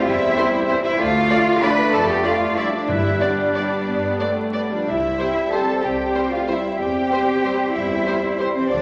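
In a rubato 3/4, this festive, elegant orchestral ballroom waltz excerpt sets a lush violin melody in the background over an up-front cello section and rich double basses, with focused distant violins, a mellow hollow flute and a bright clarinet carrying second lines, a close-miked bassoon and very quiet violas filling the accompaniment, dark French horns and clear trombones sustaining chords, and a round timpani note at 2.9 seconds, all bathed in a wet scoring-stage reverb and a layer of vinyl crackle.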